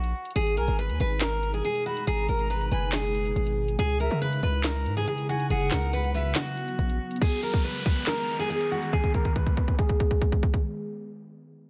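A half-time trap beat of hard-clipped kicks, sharp snare, handclaps and metallic hats drives this brooding hip hop excerpt, as a dark, full-bodied picked steel-string acoustic guitar melody with delay and a low-pass filter leads over a punchy, heavy 808-style bass that drops out at 7.0 seconds, a glassy FM pad with chorus and phaser enters at 1.0 second, a breathy jazz flute with vibrato drifts in the background until 6.3 seconds, and a downlifter and filter sweep carry the closing section under a drum fill.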